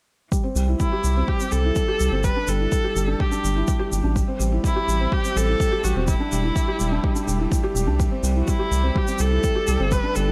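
A felt-muted upright piano with soft, intimate tone and audible action noise plays a repeating riff through digital delay in this melancholic, cinematic piano and strings electronica excerpt at 125 BPM, alongside a deep, layered electronic kick, a distant, roomy shaker, a round analog bass with tube saturation and sidechain pumping entering at 0.6 seconds, a focused bowed viola melody with vibrato from 0.8 seconds, and a very quiet string quartet holding sustained chords over C, G5 and Am7 in light reverb.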